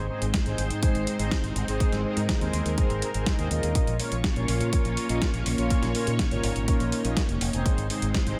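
Bittersweet and melodramatic, this italo disco fragment, cut from a longer piece, moves from Ab to Bbm and back over a straight 4/4 pulse. A lush, vintage string machine ensemble holds sustained chords through ensemble chorus, while bold, wave-folded analog synth brass plays stabs with chorus and digital delay, and a bright fingered electric bass with an envelope filter carries the low end. From 0.2 seconds an overdriven 12-bit drum machine adds hi-hat and a medium-tuned snare, joined at 0.3 seconds by a punchy, tape-warm electronic kick; both drum parts are re-recorded in a large room, and the mix sits in light reverb and digital ambience.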